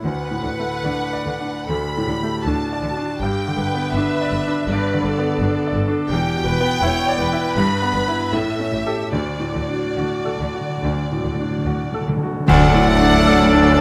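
A bright, brilliant grand piano carries the melody from the start, joined above by a rich, vibrato-laden violin section and a clear chamber violin line, while lush violas, distant cellos and biting double basses fill out this passionate D major romantic movement for piano and orchestra, moving in a rubato 4/4 at around 69-86 BPM. Hard-mallet timpani enter with a dry fill at 9.1 seconds as the harmony returns home to D. At 12.5 seconds the full band strikes an accent: a pure flute, a roomy oboe, a mellow clarinet, a bassoon, soft-attack French horns, and dark clash cymbals with concert bass drum join before the passage is cut off.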